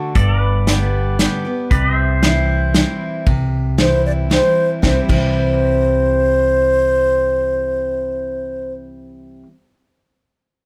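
This easygoing, down-home honky-tonk excerpt in 3/4 at 115 BPM, in C major, opens on a full-bodied jumbo steel-string acoustic guitar picking the accompaniment beneath clean, twangy pedal steel chords played with fingerpicks and slide, the harmony moving from G to C. A woody, thumpy pizzicato upright bass with gut strings joins almost at once, along with an up-front acoustic drum kit played with bundle sticks, whose dark cymbals and tight kick sound in a small room; the kit stops at 5.2 seconds. After the pedal steel stops at 3.3 seconds, a mellow, airy wooden flute with a crisp attack and straight tone carries the melody up front, and the whole piece sits in light reverb.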